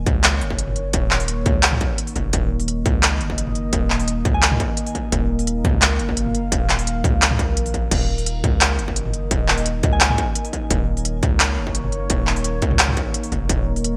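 A half-time 4/4 pulse at 172 BPM drives this dark, heavy drum and bass excerpt in Eb minor, led by an up-front industrial drum kit of smooth hi-hats, handclaps, toms and crash cymbal in gated reverb, alongside a distorted electronic kick, both re-recorded in a small room. Beneath them a deep, sine-toned 808-style bass holds long, decaying notes, while a moody sawtooth pad with a sub octave, wave-folding and ring modulation sustains slow-attack chords that pump against the sidechain under chorus and reverb. A soft FM bell chimes briefly in the background at 4.3 and 9.9 seconds, its pure tone carried by chorus and delay, and the whole piece sits in a bright 1980s-style digital production with light reverb.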